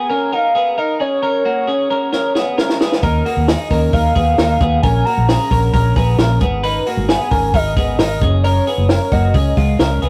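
Wistful and restless, this jangly indie pop piece at 133 BPM, cut from a longer song, opens with a bright, twangy twelve-string electric guitar playing picked arpeggios through tape echo beneath a warbling, detuned lead melody colored by chorus, tremolo and vibrato. A compact, dry cocktail drum kit with a high-tuned snare and punchy kick enters with a fill at 2.1 seconds, and a dark, round, foam-muted fingered electric bass joins at 3.0 seconds over chords moving from Abm through Gbadd9, Ebsus2 and Bbm7. The rough rehearsal-room recording sits in a moderate stone-room reverb.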